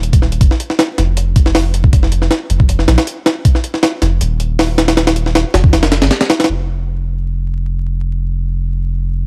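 Gritty, compressed, pitched-up sampler-style jungle drums with a thumpy kick, high-tuned snare and hi-hat open this atmospheric, nostalgic drum and bass fragment alongside a deep, round dub sub bass of triangle and square tone, all over a bed of vinyl crackle, until the drums drop out at 6.5 s and the sustained sub carries on over the crackle to 9.3 s.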